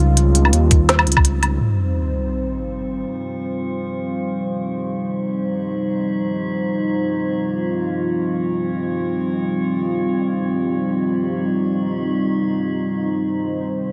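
A dark, detuned analog pad holds a sustained C minor chord from the very start, its moody sawtooth tone thickened by chorus, gritty 12-bit sampler texture and sidechain pumping, while a deep, rumbling saw bass with a beating, unison character sits up front beneath it. This cinematic, heavy fragment of half-time drum and bass moves in free time, and for its opening moments an organic electronic kit adds a woody snare, crisp filtered hats and woodblock with a tape-softened, small-room character. A compressed, pitched-down kick thumps briefly at 0.7 seconds, the drums fall away at 1.5 seconds, and the bass ends at 1.6 seconds, where a sub drop lands as an impact. From 2.9 seconds an eerie, metallic FM drone with inharmonic overtones fades in slowly alongside the pad, bathed in chorus and its own reverb. The two sustained layers carry the piece to its close at 13.9 seconds, framed by light digital ambience.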